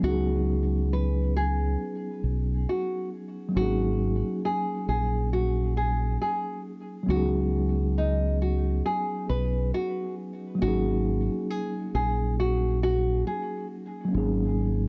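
Reflective and nostalgic, this lo-fi hip hop passage, cut from a longer piece, rolls along with a swung sixteenth-note feel over two suspended ninth chords that alternate throughout. An up-front, full-bodied nylon-string guitar carries the fingerpicked classical melody, with fresh strings and audible finger squeak softened by a low-pass filter, plate reverb and tape echo, before dropping out at 13.7 seconds. Underneath, a mellow tine electric piano heard through its built-in speakers adds clean, cassette-tinged accompaniment, while a dark, round, punchy dub bass sits at the front of the light, tape-hazy room.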